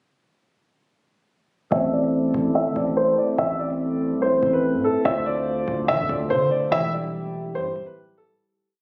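A half-time drill beat at 144 BPM in A minor sets an ominous mood, as a boxy grand piano loops a mellow melody up front from 1.7 seconds, round electric-piano-like synth keys hold spread chords through chorus and phaser, an ethereal glass harmonica pad enters at 2.0 seconds, and a heavy, distorted 808-style bass slides between long sub-bass notes, all heard through phone-captured club reverb over a filter sweep and a fade-out beginning at 6.7 seconds across Am, Dm7 and Em.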